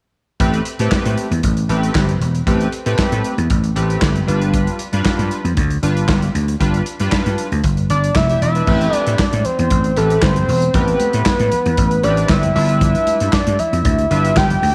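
A straight, steady 4/4 groove drives this late-night, funky slice of early-eighties boogie funk, cut from a longer piece, with an acoustic studio drum kit of punchy kick, medium-tuned snare, hi-hat, handclaps and crash cymbal sitting up front in a pumping room sound. Beside it, a bright, growly slap bass with an amped electric edge holds the low end, the two parts carrying the groove from 0.4 seconds as the harmony moves between Am9 and G7. From that same moment, a chorused polysynth fills the middle with a retro, glossy pad built from detuned sawtooth and pulse waves, sustained chords and a filter sweep. At 7.9 seconds a fat analog lead enters, its mellow detuned sawtooth and square tones carrying vibrato and a slapback echo as it takes the melody up front. From 8.7 seconds, as a new section begins, very quiet congas played with soft hands add a close, dry layer of hand percussion, all within light reverb and a small room ambience.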